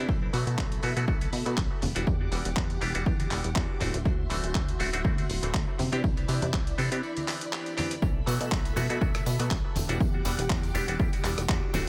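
Dry and echo-heavy, this short cut of sensual, funky filtered disco house sets an overdriven, punchy electronic kick up front beside a gritty, sampler-style soul kit of handclaps, hi-hat and rim click, with hard-hand tambourine and congas ringing in the background. A plucky, wave-folded analog bass and a twangy, nasal clav with phaser and delay pump together with lush string-machine chords under a low-pass filter, moving through B7sus4, Em9, D9 and Cmaj9. A break at 7.0 seconds gives way to a drop at 8.0 seconds that returns to the opening chords.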